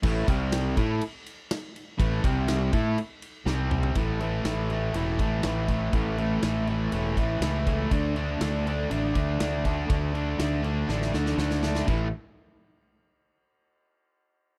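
This dry, close recording has the character of a 1970s studio, with a small room around the players. It is a confident, swaggering classic rock passage, cut from a longer piece and moving in a straight 4/4 groove. A distorted, double-tracked electric guitar sits up front with a picked riff built on C5 and A5 chords, later reaching D5. A growling, fingered electric bass with overdrive sits just as far forward, its tone direct and amped. An acoustic rock kit with a big, natural room sound, a tight kick, a medium-tuned snare and bright cymbals drives the band, with drum fills at 3.5 and 10.9 seconds before the riff lands back on A5 at 11.9 seconds.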